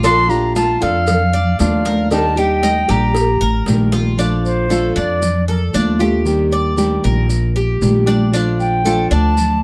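A straight, danceable 116 BPM son and guajira groove in Bb major rides on high-tuned, soft-handed congas, a round, compressed cowbell that drops out at 4.2 seconds, and grainy maracas in a distant large room, all under a growly, woody upright bass placed up front. A bright, fingerpicked nylon-string guitar keeps the accompaniment while a warm nylon-string guitar in the background adds a second line until 3.7 seconds, and a metallic, double-strung Cuban tres spins picked arpeggios over the Bbmaj7 to Ebmaj7 changes. Out front, an airy, reedy silver concert flute with rolled-off highs and tape echo carries the sunny melody, stretching into a tongued solo from 4.2 seconds in this close, detailed, lightly reverberant recording.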